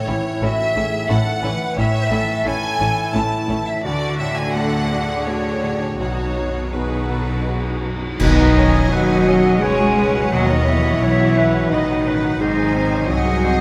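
Cinematic, emotional film score for orchestra, uplifting and moving, taken from a longer piece and flowing with a rubato feel in 3/4 at about 81-89 BPM in B mixolydian. A clear chamber violin section carries the intense, vibrato-rich melody, shadowed by a mellow, airy small flute group and a smooth symphonic violin section on second lines. Beneath them, a felt-muted upright piano and a ringing, fingerpicked concert harp supply soft accompaniment and arpeggios, joined by a very quiet viola section. A dark, distant French horn section holds sustained chords over a lush cello section and a distant double bass section. Cymbal swell, clash cymbals with bright cymbals, and concert bass drum arrive at 3.8 s, and at 8.2 s a bright, vintage-toned solo clarinet enters on a second line as close, dry timpani mark a band accent over the chord movement from A through D and B to Badd9 and G#. A moderate scoring stage reverb gives the ensemble a roomy sound.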